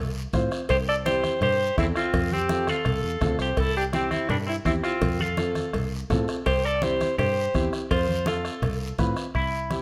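An up-front alto saxophone carries the melody in this festive, danceable cumbia, its smooth top and vibrato bathed in plate reverb, while a bright, clean hollow-body electric guitar picks a second line through spring reverb over a round, foam-muted fingered bass. A woody, boxy upright piano with audible action noise and long sustain supplies accompaniment as the harmony swings between F and C. A soft-beater bombo, low-tuned thin-skinned congas and a raspy, dry guiro drive the groove, with ringing cowbell and timbales joining in the background at 0.7 s, all within a moderate studio room in this fragment of a longer piece.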